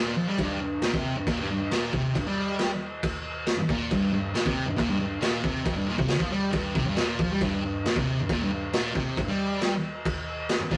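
Garage rock with a swaggering, raw mood, cut from a longer piece, in which a thick, double-tracked fuzz guitar riff opens the track alone before a gritty, saturated drum kit with a boomy kick, medium-tuned snare and crash cymbal joins at 0.4 s, both up front in a rough rehearsal-room recording with moderate reverb and warm saturation.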